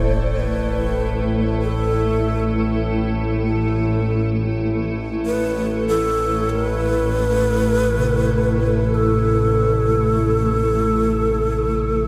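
A dark, ominous ambient passage in free time and A minor, cut from a longer piece, opens with all four parts at once: a nasal, evolving analog drone with chorus sits low and up front beneath a cloudy, blurred granular pad holding sustained chords in its own reverb. Over them a breathy shakuhachi with vibrato and chiff carries an expressive melody between A4 and C5 through a delay, while a very quiet quartz singing bowl rings out pure, bright arpeggios. The whole is bathed in a huge, wet reverb with a 7.1 s decay, giving the production a dark, warm cast.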